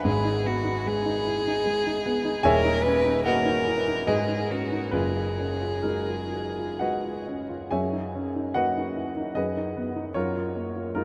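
Bathed in a huge, echoing reverb that suggests a vast space, this luminous, pastoral impressionist classical excerpt for violin and grand piano moves in a rubato 3/4 at 59-77 BPM in F# mixolydian, with a rich, smooth solo violin carrying the melody with vibrato until 7.2 s while an intimate, vintage-sounding grand piano, its action noise audible and its notes short in sustain, accompanies through chords such as G#m, F#maj9 and A#m/F# and plays alone to the close at 11.0 s.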